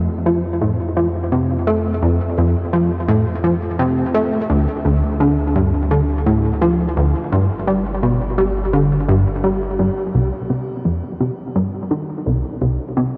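A plucky analog bass riff and a deep, round sub bass open this short cut from a longer piece of ambient, sequencer-driven space music, setting a cosmic, mysterious mood in a straight four-beat pulse. The riff sits up front with a punchy, funky character, its detuned sawtooth, square and wave-folded tones snapping in with a fast filter pluck and then decaying, thickened by lush chorus and delay. Beneath it, the sine-based sub bass holds sustained low notes until 10.1 s, when it drops away and the harmony settles from a drifting F, D minor and G passage onto C minor. The riff carries on alone until 13.1 s, washed in a huge, wet reverb with a long tail. The production is dark and warm, and the slightly flat tuning adds to the otherworldly feel.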